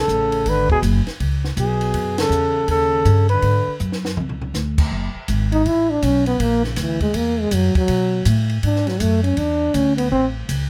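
Small-group swing and bop jazz in F# minor at 161 BPM, moody and cool, swinging in 4/4 as a short cut from a longer piece. A breathy flugelhorn with light vibrato and scooped notes carries the melody up front for the first 3.8 seconds over a mellow trombone second line, woody, thumpy pizzicato upright bass on gut strings, and a compact cocktail kit with dark cymbals, a high-tuned snare and tight kick, with a band accent at 2.1 seconds and a drum fill leading into the second section. From 4.9 seconds the smooth-topped trombone takes a solo through chords moving from F#madd9 to F#7 and B5, all captured with close, detailed microphones and light reverb.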